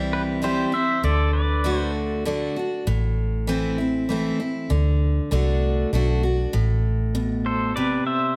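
This heartfelt, easygoing country passage moves at 98 BPM in a straight 3/4, with a bright, full-bodied steel-string acoustic guitar picking chords up front through C, D, Am, D and Asus2, some finger squeak audible, over a dark, round, foam-muted vintage electric bass. A twangy pedal steel guitar, played with fingerpicks and slide and using volume swells, takes the lead in two short phrases, from 0.1 to 1.9 seconds and again from 7.5 seconds. Close, detailed microphones and light reverb keep the sound intimate.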